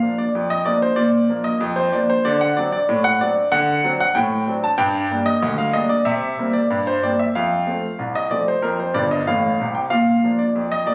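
A clear grand piano carries this short ragtime passage alone, sounding intimate and up front, with the noise of its action audible beneath the notes. The mood is lively and jaunty, set at a straight 94 BPM in 2/4 and in Bb major. Its range runs from G1 up to A5, and the polished tone rings with long sustain. The harmony moves from Bb through D7, Gm, C5 and F before a brief piano fill at 9.0 seconds leads back to Bb at 9.9 seconds. The recording was captured on a phone in a club-like room with light reverb, and it is cut from a longer piece.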